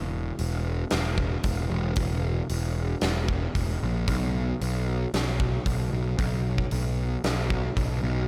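Shoegaze and dream pop with a rock backbone, this short excerpt has a hazy, dreamy mood in a straight 4/4 feel. A fuzz-soaked picked electric bass opens at 0.0 seconds, bright and overdriven, sitting up front in a low register from E1 to B1 with a direct, amped tone. The drum kit joins at 0.4 seconds with hi-hat, kick and snare, its acoustic sound big and natural as if captured in a large room. A fat snare and punchy kick keep the drums forward in the mix, giving the haze a solid, physical pulse. Light reverb softens the overall sound, and the passage stays in a single section throughout, with the bass stopping at 8.2 seconds.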